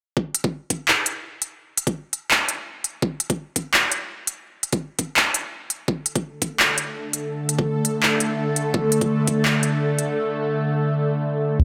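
Drenched in a wet echo-chamber reverb, this dark, heavy half-time drum and bass excerpt at 168 BPM pairs an overdriven, knocking electronic kick with an overdriven organic electronic kit of handclaps and crisp hi-hats, joined at 6.6 seconds by a tense, detuned, string-like drone with phaser and vibrato, before a break from 10.2 seconds gives way to a deep, wobbling square-and-sine bass with chorus at 11.6 seconds.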